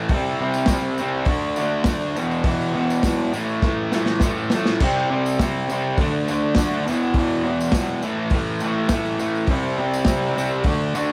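Garage rock with a swaggering, raw attitude, this short excerpt cut from a longer piece moves at 102 BPM in a straight 4/4. A double-tracked fuzz guitar sits up front, its picked, distorted riff ranging from E2 to D4 and cycling through power chords on C5, D5, E5 and A5. Beneath it, a crunchy breakbeat drum kit sounds saturated and gritty, with a punchy kick, a medium-tuned snare and dark crash, splash and hi-hat cymbals under a rolled-off top, and it breaks into a fill between 3.6 and 4.8 seconds. A jingly tambourine enters at 0.5 seconds and stays in the background. The whole band sits in a moderate small room reverb that gives the performance a close, live-in-the-garage feel.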